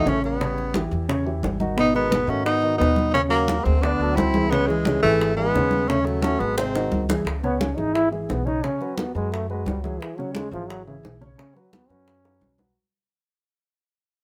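At a driving 175 BPM in straight 4/4, congas and bongos with hard hands set a brisk Afro-Cuban jazz groove in C# minor, the congas thick-skinned and saturated, the bongos tight and high-tuned. An upright bass played pizzicato adds a woody, growly low end, while a concert grand piano with deep bass comps through sophisticated harmony such as A9, D13 and D#m7b5. Up front, a tenor saxophone carries the melody with vibrato and scooped notes until about 7.0 seconds, as a breathy, soft-attacked trombone shapes a second line beneath it. From 7.3 seconds the trombone takes a solo over alternating C#m7 and Bsus2 chords while the passage fades out, with drum fills marking the turn and the close. Light reverb gives the ensemble a polished sense of space in this fragment of a longer piece.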